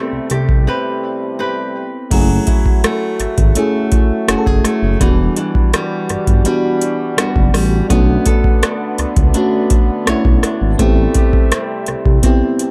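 Contemporary R&B at 83 BPM in F# phrygian, sensual and longing, this excerpt sets a booming, overdriven analog drum machine up front with a deep kick, metallic hats, crash and rim click under a smooth, dark sawtooth synth bass that enters at 0.1 seconds. A soft, round FM electric piano with chorus and tape echo carries the accompaniment through ninth-chord changes, while a fingerpicked flamenco guitar on fresh strings spins echoing arpeggios and a vintage French horn section holds mellow sustained chords beneath. The mix is dry of reverb but heavy with echo, with a break from 0.7 to 2.1 seconds before the second section moves from F#m9 through Em9 and Bm9 back to Am9.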